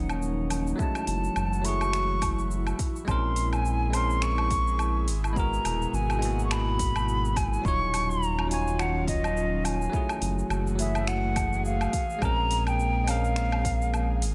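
Smooth and warm, this sunset chillout excerpt moves at 105 BPM in 4/4 with a swung sixteenth feel, cycling through minor ninth chords such as Ebm9, Gbm9, Bbm9 and Abm9. A bell-like tine electric piano with digital delay and a breathy pad treated with chorus hold the harmony over a round analog bass sitting up front, while an overdriven deep house kit of finger snaps, metallic hi-hat, shaker and woodblock enters at 0.1 seconds. At 0.8 seconds a gritty electronic kick arrives alongside a hollow concert flute melody, its vibrato and crisp attack trailed by tape echo, in a lightly reverberant mix.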